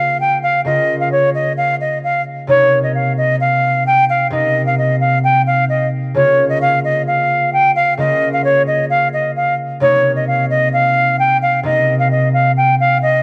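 Hip hop with an eerie, dark mood at 131 BPM in a half-time 4/4 feel and C phrygian, this passage cut from a longer piece pairs an airy, straight-toned silver concert flute with a crisp attack carrying the melody between Db5 and G5 over a fingerpicked, ringing concert harp accompaniment, both up front and running the full 13.2 seconds through a cassette tape effect and light studio reverb on a home cassette recording, as the chords move between Db6 and Cm7.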